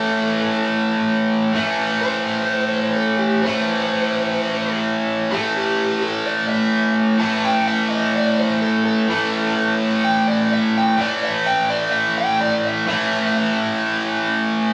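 A heavy, gritty rock excerpt in A minor at 127 BPM opens on an A5 chord, with a dark, overdriven slide guitar playing a fingered solo melody over a bright, double-tracked distorted electric guitar riff that sits up front in the low register. The slide line carries the melody until 13.3 seconds, leaving the picked riff to run alone until the cut at 14.7 seconds. The sound is a rough rehearsal-room take with warm saturation, a small room ambience and moderate studio reverb, tuned to A4 = 441 Hz.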